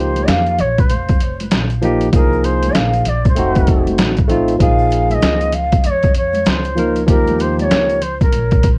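A gritty, pitched-down trip hop drum kit sits up front in this smooth, cool jazz-hop excerpt, its thumpy kick, medium-tuned snare and hi-hat compressed and overdriven, entering at 0.2 seconds and swinging at 97 BPM in 4/4. An airy bamboo bansuri carries the melody from the start with a soft attack and vibrato, sounding distant yet forward, trailed by tape echo. Beneath it, a barky tine electric piano, lightly overdriven through a combo amp with a phaser, voices the harmony from a rootless Db69 through Bb9sus4, F7b9 and Bbm7 to Eb13, dropping out at 8.0 seconds. A woody pizzicato upright bass with steel strings anchors the low end, while congas and a tube shaker played with soft hands add vintage, band-limited texture in the background. The whole mix carries light reverb and the worn, warbling pitch drift of old cassette tape.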